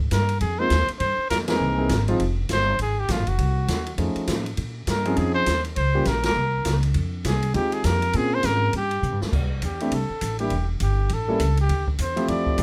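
A brisk 4/4 swing at 202 BPM, with a lilting eighth-note feel, drives this short cut from a longer small-group jazz performance in a sophisticated, playful swing-and-bop vein. A pizzicato upright bass with steel strings sits up front from the opening, woody and growly. The drum kit sounds distant and roomy, with dark ride and crash cymbals, hi-hat, a medium-tuned snare and a boomy kick. The trumpet carries the melody with vibrato and a present, up-front tone, and a warm grand piano with long sustain joins as accompaniment at 0.6 s. The harmony moves through minor chords and altered dominants, and the band hits shared accents along the way. A drum fill at 9.0 s sets up a turn to C major at 9.3 s, where the trumpet takes a solo, all framed by light reverb.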